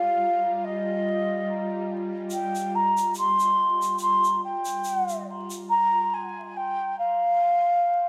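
Melancholic and cinematic, this brief trip hop fragment sets an airy, mellow baroque flute up front, its wooden tone carrying expressive vibrato and a dub echo as it sings in a high register throughout. Beneath it a tense, string-like bowed drone with a sawtooth edge and its own reverb hums until 5.7 seconds, joined from 2.3 seconds by a soft tube shaker. The whole sits in a moderate echo-chamber space with vinyl crackle, and after the drone drops away the flute carries on alone to close the cut.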